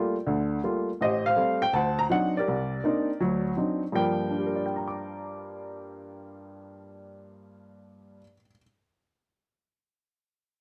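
Swung eighths at 164 BPM in 4/4 drive this moody, late-night solo jazz passage in G minor, cut from a longer piece, where a lone upright piano with a woody, up-front tone moves through Gm9, Am7b5, D7b9 and Cm9 in a moderate studio reverb before landing on Gm7 at 3.9 seconds.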